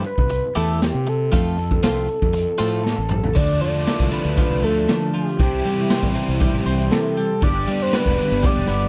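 A bright, clean twelve-string electric guitar riff with warbly pitch drift and a growly fuzz bass open this upbeat yet wistful indie rock excerpt, joined at once by a straight 4/4 drive from a raw, gritty garage drum kit with a punchy kick and a screaming sawtooth synth lead with chorus, until a drum fill at 2.9 seconds brings in a biting overdriven guitar riff with tape echo at 3.4 seconds, the whole mix sounding dry and close.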